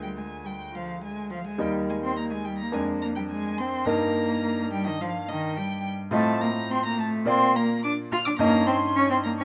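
Spirited and lively, this brief passage from a quick classical-period piano trio movement moves with a flexible, rubato feel across its 9.4 seconds. A con sordino violin carries the melody with a veiled, distant tone and vibrato, while a close, dark-toned muted cello sings a second line with vibrato and portamento. Alongside them, a brilliant grand piano supplies the accompaniment, all three up front in a light reverb.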